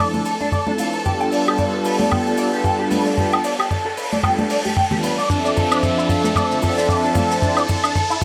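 Groovy and feel-good, this short nu-disco excerpt, cut from a longer piece, moves at 113 BPM in 4/4 with a 16th-note swing of 56%, sitting in G mixolydian with tuning at A4 = 436 Hz as chords shift from Dm9 to G9 at 1.1 s and back to Dm9 at 5.3 s. A detuned sawtooth analog pad sits up front with a soft attack, treated with chorus, tremolo, cassette tape character and tape echo, while a filter sweep runs across it until it stops at 7.6 s. Alongside it, a dark chamber string section holds bowed, even chords with vibrato, and a bright, twangy electric guitar picks a clean, compressed riff through an envelope filter, colored by ensemble chorus, a low-pass filter and tape echo. A damped 70s drum kit with a rolled-off top plays up front in a small room, adding hi-hat, shaker, toms and woodblock, with a drum fill spanning the whole passage, as cabasa, congas and bongos bring a live-room feel. 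The whole stretch is a build-up, with an electronic riser entering in the background at 0.9 s, all captured as a dry, gritty hardware recording with light reverb and small room ambience.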